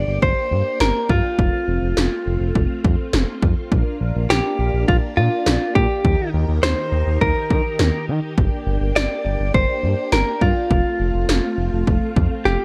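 This synth-pop excerpt opens with a clean, picked electric guitar carrying the melody, recorded direct and compressed, with delay trailing its notes. Beneath it sit a smooth, gliding sawtooth-and-triangle synth bass and vintage, organ-like string chords with a soft attack. The drums arrive at 0.2 seconds: an analog electronic kit with a punchy kick and gated snare, overdriven and carrying a small-room character, placed up front with the guitar and bass. The organ-string pad sits lower in the mix, colored by phaser and ensemble chorus, while the mellow bass evolves with vibrato and portamento. The chords move through Gm, F, Bb and Eb before returning to Gm and F in a straight 4/4 feel, giving a mood that is bright yet wistful. The production is dark and warm with light reverb and digital ambience, and a drum fill at 12.5 seconds closes the passage.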